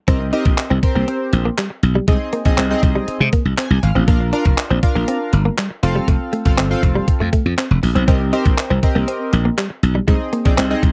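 Dance-pop at 120 BPM in C minor, energetic and confident, this clip from a longer piece sits in a drop built on Cm7, Ab, Bb and F, with a glassy, growly slap bass and a crisp 8-bit drum machine of thumpy kick, hi-hat and handclaps up front, a clean, compressed direct guitar riff with analog chorus, and chorused retro synth keys whose sawtooth and pulse-wave tones pump under sidechain and step out for a brief fill at 3.3 seconds, all in a dark, dry production.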